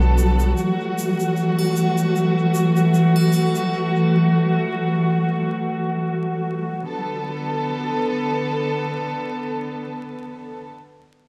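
A dark chamber string section carries this melancholic, cinematic trip hop excerpt, bowing sustained chords sul tasto with light vibrato and a soft attack, close and intimate up front while a low-pass filter sweeps across it through the first 6.9 seconds. The piece moves at 76 BPM in 4/4 with a gentle swing on the sixteenths, in B minor, shifting from Bm7 to F#m7 and returning to Bm7 at 6.9 seconds. A soft 808-style bass sounds one round, deep, sine-like note at the very start, fast in attack and quickly decaying. Behind it, a flickering, grainy, detuned granular texture sits in the background with a slow attack and long release, bathed in its own reverb until 6.9 seconds. Egg shaker and triangle add dry, close, hard-handed acoustic touches from 0.2 to 3.7 seconds, trailed by dub echo. The whole mix is echo-heavy, set in a small room with a moderate echo-chamber reverb and a layer of vinyl crackle.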